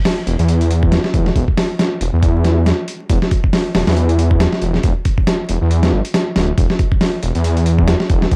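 Breakbeat at 138 BPM in E minor with a raw, funky swing on the sixteenths, built on an overdriven, gritty soul sampler-style drum kit of thumpy kick, medium-tuned snare and hi-hat sitting up front, joined at 0.3 seconds by a thick, menacing detuned saw bass with tube saturation and a beating, sustained tone between D1 and E2, all set in a dark production with light reverb and vinyl crackle in this 8.4-second cut from a longer piece.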